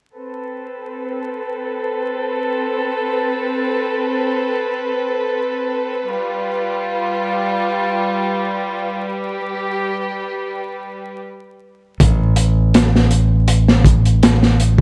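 In free time, a melancholic, hypnotic trip hop passage in A minor opens with a veiled, con sordino chamber violin section holding sustained Amadd9 and G7 chords, bowed with soft attacks and vibrato under a low-pass filter. A brief stop at 11.3 seconds gives way at 12.0 seconds to a gritty, saturated breakbeat kit with a punchy kick and hi-hat, entering together with a bright, fingered electric bass on a tube-saturated low A. Vinyl crackle and a light, small-room reverb frame this fragment cut from a longer piece.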